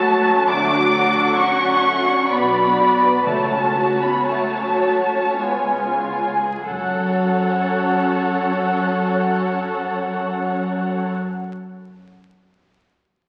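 Muted strings open this slow classical passage in F# minor, with the violin section carrying a yearning melody up front while a second violin line sits close beneath it, the violas murmur a distant accompaniment, and a chamber-sized cello section adds a soft-edged bass. The double basses join at 0.5 seconds, deepening the veiled, dark sound with their lush, vibrato-laden tone. The music moves in a rubato 3/4 at roughly 45-69 BPM, slowing down through its opening 6.7 seconds as the harmony passes from D through Bm and F#m/C# to a C#7 that resolves onto F#m. From 3.3 seconds a timpani played with soft mallets adds a round, barely audible color underneath. The whole melancholic excerpt is bathed in a wet scoring-stage reverb and heard through the crackle of a very old 78 rpm record.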